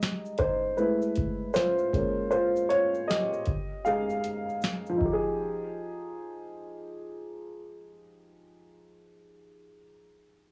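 A swung 78 BPM groove in 4/4 from a booming analog drum machine, with its deep kick, tonal snare, metallic hats and shaker, drives this nostalgic, hazy lo-fi hip hop fragment in F minor until 5.2 seconds, while a dark, woody upright piano, softened by cassette tape and a low-pass filter, takes a solo turn over Abmaj7/G, Fmaj7#11, Bbm7 and Fm9 chords and carries on alone until 10.5 seconds in a small, lightly reverberant room.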